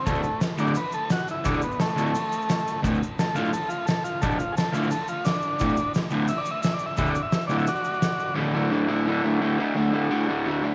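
A swaggering, raw garage rock cut opens at 0.0 with an overdriven combo organ soloing on a buzzy, vintage tone with heavy vibrato, riding up front over a driving 173 BPM in straight 4/4. Beneath it, a crunchy, double-tracked electric guitar plays a picked low riff, bright and overdriven and placed just as close. An oversized, low-tuned acoustic drum kit pounds out crash, punchy kick and a fat snare, its dark, saturated sound set in a gritty stone-room ambience. A grainy, band-limited tube shaker sits far in the background. Organ, drums and shaker all drop out by 8.4 seconds, leaving the guitar riff alone until the cut ends at 10.7 seconds, with a moderate plate reverb giving the room some depth.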